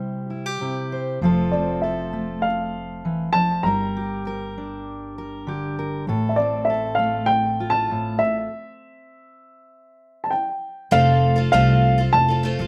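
Dry, close outdoor sound frames this nostalgic, uplifting folk fragment at 99 BPM in F major, where a dark, mellow upright piano with audible action noise and slapback echo carries the melody over a full-bodied fingerpicked steel-string guitar and a woody pizzicato upright bass entering at 1.2 seconds, the music pausing in a stop from 8.5 seconds before a bright, shimmering twelve-string guitar, also with slapback echo, takes over the accompaniment at 10.9 seconds.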